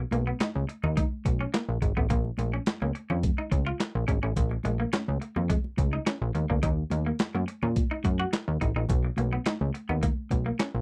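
A punchy, plucky analog bass with a sawtooth filter attack anchors this slick, danceable early-eighties boogie funk excerpt at 106 BPM, sitting up front beside a gritty, compressed sampler-style boom bap kit of thumpy kick, snare, hi-hat and handclaps, while a bright, twangy clean electric guitar riff with subtle chorus and very quiet, soft-handed congas fill out a dry, close 1970s-style studio sound over Bmaj9, A#m and D#m chords.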